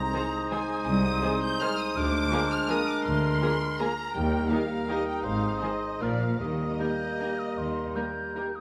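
A full orchestra opens at once on an Ab chord in this festive, sweeping ballroom waltz in Eb major, moving in 3/4 at 146-176 BPM with a rubato feel through a short cut from a longer piece. A lush, rich violin section carries the melody high in the texture with soft-attack, expressive vibrato, while an airy, hollow flute, a mellow, roomy clarinet and a smooth cor anglais each trace a second line. A darker violin section enters at 0.1 s with another second line set in the background, joined by a very quiet viola section that adds portamento, and a tight French horn section that holds soft sustained chords. The dark bassoon supplies accompaniment with light vibrato, and the bass rests on a focused, clear double bass section and a warm cello section sliding with portamento, both stopping at 7.9 s. The harmony moves from Ab through Bb7/D to Eb, then Ab, Bb and home to Eb, all set in a moderate scoring-stage reverb that gives the background strings a distant, spacious glow.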